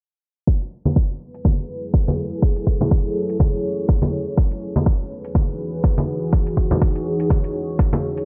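Heard through cassette tape and a low-pass filter in a light digital ambience, this hypnotic deep house cut at 123 BPM swings in F# dorian. An up-front kick and background metallic hi-hats, both overdriven with 12-bit sampler grit and re-recorded in a large room, begin at 0.5 s, close ringing congas join at 0.9 s, and a moody, detuned sawtooth pad with a sub octave, chorus and sidechain pumping arrives at 1.4 s, holding F#m11 before shifting to Emaj7 as a filter sweep runs throughout.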